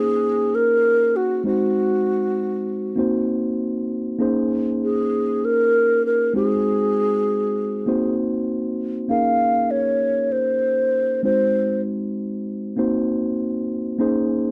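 A breathy, hollow alto flute carries the melody with a straight tone and crisp attack, sitting up front until it drops out at 11.8 seconds. Beneath it, a clean, mellow tine electric piano cycles through Bbm11, Ab7 and Cm7b5 chords, playing alone to the end at 14.5 seconds. This bittersweet, silky soul excerpt in Bb minor moves at 98 BPM with a light sixteenth-note swing, its dark production touched by light reverb.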